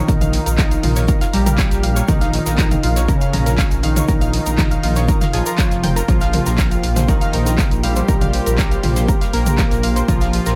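An overdriven, up-front electronic kick drives this hypnotic, cinematic melodic techno cut at 120 BPM in Bb dorian, with a menacing, saturated detuned saw bass whose filter swells add weight, a smooth, airy supersaw melody with dub echo, a glassy wavetable second line, round chorused analog pluck arpeggios, and a thick, warbling vintage pad holding Bbm before moving to Fsus2/Bb at 6.1 seconds. The supersaw, pad, arpeggios and bass pump against a tape-toned analog drum machine of echoed handclaps, hi-hat and toms, joined by a very quiet soul kit of hi-hat and snare and a grainy tube shaker in a dry, echo-heavy mix.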